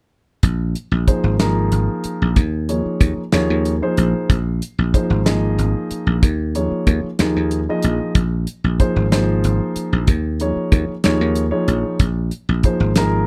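Electric jazz fusion in a straight 6/8, this short, nocturnal and funky cut from a longer piece moves at an unhurried pace under a dark, warm production with light reverb. A dry thumbed slap bass sits up front, bright, growly and punchy with a foam-muted, direct tone, holding to its low register from 0.4 seconds. A damped 70s acoustic drum kit enters at the same moment, its hi-hat, tight kick and medium-tuned snare sounding close and dry. A dark grand piano joins at 1.1 seconds with mellow, smooth, vintage voicings, the action noise audible enough to make it feel intimate. The harmony rocks steadily between Bb9sus4 and Eb9sus4, giving the groove a suspended, floating quality.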